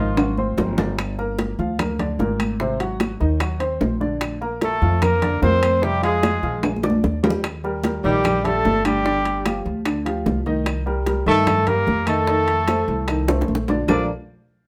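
A brief phrase of breathy trumpet and tenor saxophone opens over clear upright piano and dark, thumpy pizzicato upright bass, then the horns fall away at 0.8 seconds while bright congas, round low-tuned bongos, ringing metal-shelled timbales and woody claves drive this lively, danceable Afro-Cuban jazz excerpt in Bb major at 149 BPM, until the mellow trumpet melody, shadowed by the whispered, scooped tenor line, returns at 4.6 seconds and carries through drum fills and a moderate studio reverb to the end.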